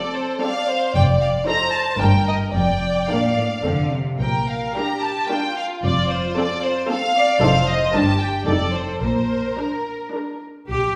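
A resonant recital-hall sound frames this cheerful, graceful excerpt from a quick classical-period movement for string orchestra in a flexible triple metre, where the lush first violins carry the melody, the second violins add a smooth second line and the close violas supply accompaniment before the focused cellos and woody double basses enter at 1.0 s to anchor the bass.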